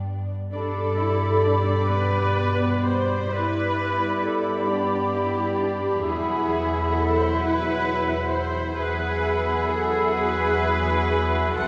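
Veiled, con sordino violins in two lines, up-front violas and lush double basses open this hopeful, uplifting cinematic film-score excerpt in G major at a rubato 44 BPM in 6/8, joined at 0.5 seconds by dark muted cellos and a mellow oboe, clarinet and hollow silver flute in the background, with mellow French horn chords from 0.6 seconds, as the harmony moves from G through Gadd9 to Eadd9 at 6.0 seconds inside a reverberant recital-hall space.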